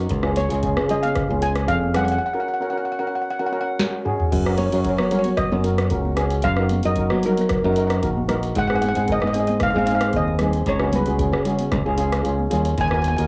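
Calypso with a festive, bouncy spirit, this short cut from a longer piece moves at a straight, easy stride in four. Two steel pans share the work: a bright, close-miked pan struck with hard rubber sticks carries the chords with a dry, full ring, while a mellow, airy pan played with soft rubber sticks sings the melody from 0.4 seconds, both carrying a cassette-tape coloring. Underneath, a growly fingered electric bass sits up front with a direct, electric bite, and a booming analog drum machine supplies a deep kick, crisp snare, metallic hats, rim clicks, toms and crash, its sound re-recorded in a large room and tinted by tape. High-tuned congas ring softly in the background, played with gentle hands. A break arrives around 2.2 seconds and closes with a drum fill into the next pass, and near the end the kick and snare briefly drop out. The whole has the homespun feel of a cassette home recording with a light touch of reverb.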